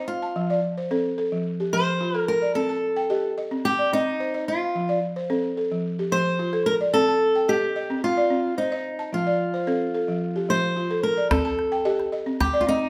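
Flowing and hypnotic, this short excerpt of West African string and xylophone music moves at 110 BPM in 4/4 with a straight feel in C dorian, circling between F and Cm. A fingerpicked steel-string acoustic guitar carries the melody up front, with audible finger squeak, while a woody, buzzing balafon struck with soft rubber mallets plays arpeggios in a dry, boxy small-room sound. A small, close calabash joins at 11.3 seconds, and light reverb gives the whole a gentle sense of space.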